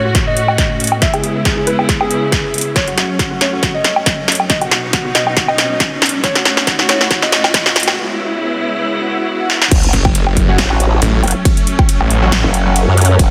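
A snarling, detuned sawtooth bass and a wobbling, formant-filtered growl bass hit hard at the drop around 9.7 seconds, joined shortly after by a very quiet orchestra-hit-like synth stab, in this heavy, chaotic half-time dubstep fragment, after a build-up where a soft, felt-muted upright piano melody with audible action noise and tape echo floats over distant, lush bowed strings, punchy layered electronic drums with metallic hats, an overdriven kick, and faint risers and a sub drop.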